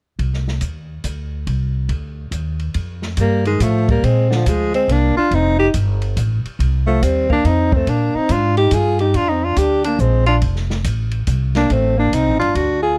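A dry, close 1970s-style studio sound with small-room ambience frames this swinging, sophisticated small-group jazz in 3/4 at 141 BPM, centred on F mixolydian and cut from a longer piece. A woody, pizzicato upright bass sits up front with an acoustic kit of dark cymbals, medium-tuned snare and boomy kick from 0.2 seconds, and at 3.2 seconds a smooth-topped tenor saxophone with light vibrato takes the melody while a punchy, forceful alto saxophone adds a second line alongside it. The harmony moves from Cmadd9 through Fadd9 and Bbadd9 to F7 and Bb7, then closes on Gmadd9 and Ddim.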